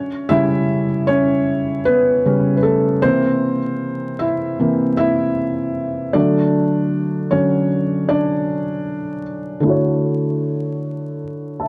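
Vinyl crackle and a moderate plate reverb surround this nostalgic, dreamy hip hop fragment at 77 BPM with a lazy 16th-note swing in D major, where a felt-muted upright piano plays alone, mellow and intimate, up front and colored by cassette tape and a low-pass filter, drifting through A9/C#, C7 and Dmaj7 before a filter sweep takes hold of it at 9.7 seconds.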